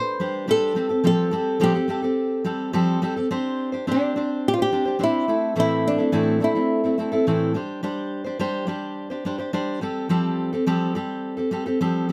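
Heartfelt and carefree, this short pop excerpt at 106 BPM in C major pairs an up-front flamenco guitar melody, which ends at 7.5 seconds, with a fingerpicked steel-string dreadnought accompaniment whose finger squeaks ring through close, detailed microphones and light reverb, drifting over chords like Csus2/G, Fadd9 and Am until 12.1 seconds.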